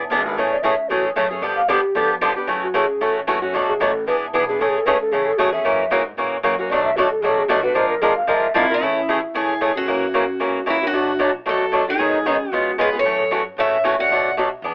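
Heard through a narrow, telephone-like filter with a moderate club reverb, this lively, playful stretch of acoustic string swing in the jazz manouche style moves at 227 BPM in 4/4 with a swung eighth-note feel in A major. Up front, a bright, boxy swing-style guitar picks out the accompaniment throughout, with the occasional finger squeak audible on the strings. Deep in the background, a woody, thumpy upright bass with gut strings plays pizzicato beneath it. From 0.5 seconds a reedy bass ocarina with an airy, clay tone and tongued, vibrato-laden notes takes a solo over the first section, which moves through chords such as Amaj7, G7, F#m7 and a Bb6. At 8.6 seconds a parlour-style steel-string acoustic guitar with fresh strings enters to carry the melody into the second section, while the ocarina continues as a second line.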